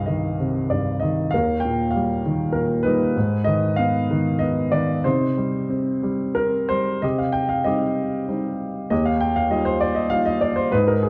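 A dark production places a woody upright piano up front in a recital hall with moderate reverb, giving the sound a natural, close presence. This is a moody, cool fragment of lyrical classical solo piano in C minor, cut from a longer piece, moving in 3/4 at roughly 88-100 BPM with a rubato feel. The upright plays alone throughout, spanning C2 to G5, and is tuned to A4 = 443 Hz. The harmony moves from Cm through Eb and Abm before returning to Cm. A new section begins at 7.0 s and settles onto an Ebadd9 chord at 8.9 s, carrying the music to its close at 11.1 s.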